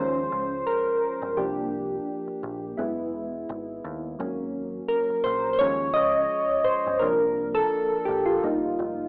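Lo-fi hip hop at 85 BPM with a lightly swung 16th-note feel, this nostalgic, hazy fragment is led by soft, mellow electric-piano-like synth keys that sit up front and move through suspended ninth chords, starting on Eb9sus4. A dark, round dub-style picked electric bass sits low in the mix beneath them throughout the 9.1 seconds. The keys are coloured by chorus, phaser, cassette-tape wear and plate reverb, and the whole recording is bathed in a wet studio reverb and an AM-radio tone.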